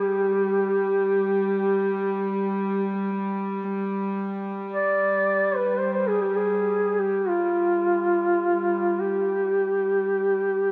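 A moderate church reverb with a dark, rounded top surrounds this short excerpt of a Caucasian folk lament in free time, full of longing and mourning. A mellow solo duduk carries the melody up front between F4 and D5, its soft attacks, scooped notes and vibrato giving it a distant, roomy folk voice. Beneath it for the full 10.7 seconds, a close chamber string section holds a bowed drone on G3 with light vibrato and a reedy, gut-string tone in period style.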